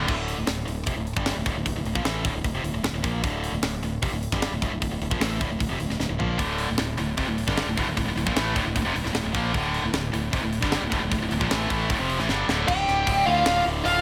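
A straight 4/4 pulse at 152 BPM drives this epic, aggressive heavy metal passage in D minor, cut from a longer piece. An acoustic metal drum kit with bright cymbals, a high-tuned snare and a tight kick sits up front in a big room, playing drum fills along the way, while a growly, direct fingered electric bass holds the low end. A picked, high-gain rhythm guitar riffs on D minor up front throughout, and a second distorted riff guitar, heard only for an instant at the very start, rejoins it from 6.4 to 12.7 s. At 12.7 s the drums drop into half time as a warm, high-gain lead guitar takes the melody high over the band. A fainter lead guitar line with delay sits in the background beneath it, and studio ambience frames the whole performance.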